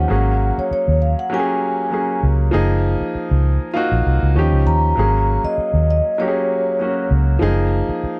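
Lush 1970s-style soul with a romantic mood, this short excerpt moves at 99 BPM in 4/4 with a gentle sixteenth-note swing. A vibraphone played with soft mallets carries the melody, its mellow, ringing metallic tone shimmering with a fast motor vibrato before it drops out at 7.1 seconds. Beneath it, a clear, natural grand piano sits up front with the accompaniment, while a dark, round electric bass, fingered and foam-muted through an amp, anchors the low end as the most prominent part. The harmony drifts through Ab9sus4, Gbmaj13 and Eb9 chords, giving the passage a plush, suspended glow. Light reverb and a softened top end lend the whole recording a vintage, cushioned sound.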